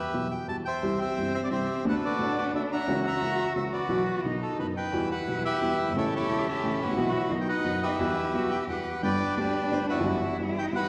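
A reedy, dark bandoneon opens this dramatic, melancholic tango in E minor, carrying the melody up front, with a woody, slightly detuned vintage upright piano joining at 0.1 s to accompany from deep in the bass. At 0.8 s a single distant bowed cello enters with a second line full of vibrato and portamento. The 3/4 pulse at 176 BPM is played rubato, and the parts sit in the lingering reverb of a concert hall in this passage cut from a longer piece.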